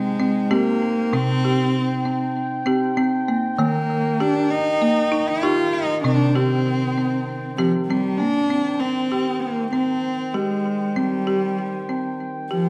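A single bowed cello carries the melody up front, its soft attack, airy bow and light vibrato giving the line an intimate, close presence, touched by a delay. This is a hypnotic, gentle piece of meditative world music built around tuned percussion, moving at 98 BPM in a straight 4/4 in C minor, tuned to A4 = 436 Hz. A folk marimba struck with hard mallets plays arpeggios just as prominently, its hardwood bars sounding woody, dry, rustic and bright, with its own delay adding echoes. Beneath them, a mellow brass section holds sustained chords at a lower level, close-miked and classical in style with light vibrato. The harmony moves from C minor to E-flat at 3.6 seconds and back to C minor at 6.0 seconds, and a new section begins at 8.5 seconds. A wet scoring-stage reverb and small room ambience frame the dark production of this short cut from a longer work.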